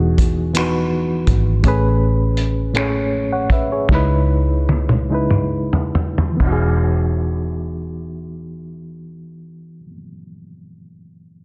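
A slow R&B piece in 6/8 at about 44-55 BPM in E major, this short excerpt feels intimate and tender, cut from a longer work. A reedy, worn electric piano carries the chords with a fast tremolo, sitting up front and sounding slightly out of tune through its built-in speakers, moving from Emaj9 to Amaj9 and C#m9 before returning to Emaj9 at 6.4 seconds. Beneath it, a vintage foam-muted fingered bass gives a round, punchy low end until 9.9 seconds. A dark-toned soul drum kit in a small room, with dark cymbals, a punchy kick, finger snaps and a china cymbal, plays up front until 6.6 seconds, including a fill that leads into the second section. The opening passage slows as it goes, under a filter sweep, and the whole is set in light studio reverb with a dense, heavily limited modern master.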